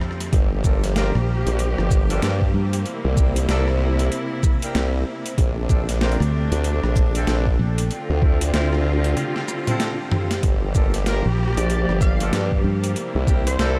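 A gritty, thumpy electronic kick and a chorused formant-sweep wobble bass drive this playful, funky glitch hop excerpt, joined by a round, foam-muted fingered electric bass, an overdriven boom bap sampler-style kit with a high-tuned snare, clear bowed strings and distant jazz-style horn stabs pumping against the sidechain, a very quiet, moody ambient pad, and an edgy, tearing sync lead that enters at 11.6 s after a drum fill from 9.2 to 10.4 s.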